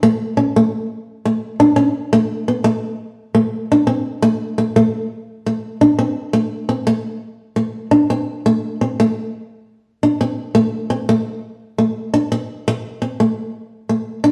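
Highlife in a straight 12/8, moving at 114 beats per minute counted in dotted quarters, with a warm, sunny mood. This short excerpt is cut from a longer piece and features a solo nylon-string guitar playing from start to finish across its 14.3 seconds. The fingerpicked guitar sits up front with a warm, small acoustic tone, and finger squeaks add a human touch to the playing. It stays in a compact register between A3 and D4, and the music moves into a new section at 4.2 seconds. A wet stone-room reverb gives the guitar a resonant, lingering tail, and the performance has the natural feel of musicians playing live together in one room.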